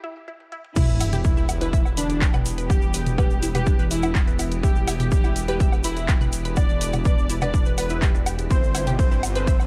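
A dark, dry production frames this melancholic, dramatic melodic techno cut in E phrygian at 124 BPM, where a lush detuned unison pluck arpeggiates through a phaser and delay from the start, and an overdriven house kit fill from 0.4 seconds leads into a drop at 0.8 seconds over Em7 with a punchy up-front kick, a sub drop impact, a menacing saturated saw bass, a fat warbling analog lead set against a distant bowed violin section playing a second line, a very quiet morphing wavetable pad and a grainy egg shaker, all moving toward a G7sus4 at 8.5 seconds.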